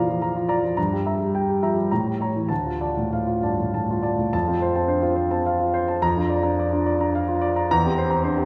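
Romantic classical character piece for solo grand piano, passionate and stormy, moving in 3/4 at around 96-110 BPM with a free, rubato feel. The piano sounds warm and present, placed up front with long sustain across a range from D2 to Bb5, while a wet recital-hall reverb gives it the air of a church or concert hall. The harmony moves through Bb, Edim/G and A7b9 to arrive in D minor at 2.5 seconds, then turns to F major at 4.3 seconds, passing through Bb/F before this excerpt ends on C7/E.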